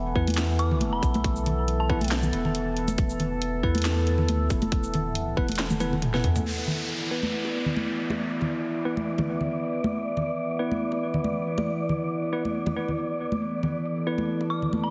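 This deep dubstep excerpt moves with a half-time, lightly swung feel and a cavernous, heavy mood, its overtone-sweeping drone of resonant, chorused sustained chords running throughout while a soft, round dub sub bass and a tight, up-front electronic kick anchor the opening until around 6 seconds. Bell-like tine electric piano stabs, filtered and trailed by dub echo, sit over a garage drum kit with a cracking snare and warm hats, plus close, dry congas and bongos struck with hard hands, and an eerie, inharmonic detuned synth bell with 12-bit sampler grit sounds briefly near the start and again at the very end. A drum fill leads into the second half, where a downlifter falls away and an airy, breathy wind-like noise texture enters at 7.4 seconds, all framed by a lush hall reverb and a heavily compressed, radio-like sound.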